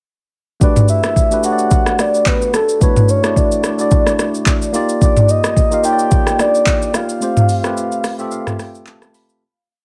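A soft, round octave-layered synth lead with chorus and digital delay carries a motif-based melody over bright tine electric piano playing syncopated drop2 chords with grace notes and short fills, while an up-front, overdriven smooth R&B drum kit drives a warm, soulful amapiano groove of steady shaker, soft kick, syncopated rim, hi-hat, handclaps and toms in light reverb, until a break and fade-out from 7.2 seconds where the electric piano adds a fill at 7.8 seconds.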